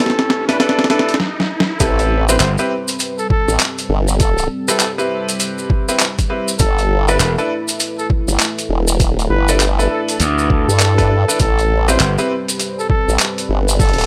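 A wobbling formant-sweep bass, detuned and tube-saturated, leads this funky, gritty glitch hop cut from the drop at 1.8 seconds, moving between E1 and G2 at 100 BPM in A minor with a 16th-note swing. Before it, a short build-up pairs a drum fill and a background electronic riser over a dark analog pad, which holds deep, moody sustained chords through chorus, phaser, sampler grit and sidechain pumping. A mellow trumpet with light vibrato carries the melody in a classical style through lo-fi 12-bit grit and tape echo, while a brilliant grand piano punches in with stabs, its action noise audible and its sustain long. The boom bap sampler-style kit of snare, rim click, hi-hat and handclaps is pitched down and overdriven, joined at the drop by a thumpy electronic kick and grainy acoustic maracas. After a brief hit at 2.4 seconds, a punchy, overdriven electric slap bass returns from 7.2 seconds to add its bite, as the chords move between G69 and Am9 in a dry hardware recording.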